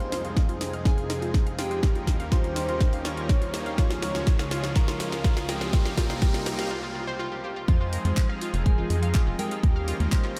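Emotional and dreamy, this progressive house excerpt in F minor at 123 BPM builds through filter-swept analog pluck arpeggios, soft supersaw stabs and a lush, thick unison pad beneath a velvety synth lead melody and a very quiet, pure synth bell line, with a punchy up-front electronic kick, a cracking house drum kit of handclaps, hi-hat, rim click and snare, and a faint riser and swell, before the drop at 7.7 seconds brings in a tight, driving sequencer bass, bright background congas at 8.0 seconds and a glassy, drifting harmonics texture at 8.9 seconds, all bathed in moderate cathedral reverb over a pulsing sidechain pump.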